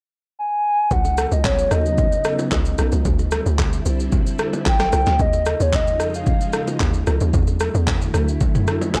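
A hollow, woody clarinet-like synth lead with vibrato, chorus and tape echo carries the melody up front from 0.4 s in this relaxed amapiano excerpt; at the drop at 0.9 s it is joined by a bouncy, percussive FM log drum bass, an overdriven deep house kit with a deep kick, punchy snare, handclaps, rim click, shaker and toms, and ringing congas and bongos in the background, while a silky, dark string machine with ensemble chorus and sidechain pumping holds Db9sus4, D9sus4, Eb9sus4 and E9sus4 chords from 1.1 s, all in a dry, gritty cassette-tape sound.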